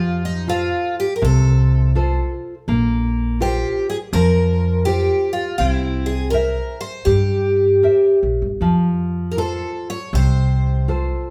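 Rubato in 4/4, this mournful, longing fado-style ballad excerpt has a shimmering, octave-doubled picked twelve-string acoustic guitar carrying the melody over a full-bodied, fingerpicked nylon-string guitar, with finger squeak audible on both guitars, and a woody, dark pizzicato upright bass beneath, all played live together in one room with moderate large-studio reverb as the chords move from F through Bbsus2 and C7 back to F.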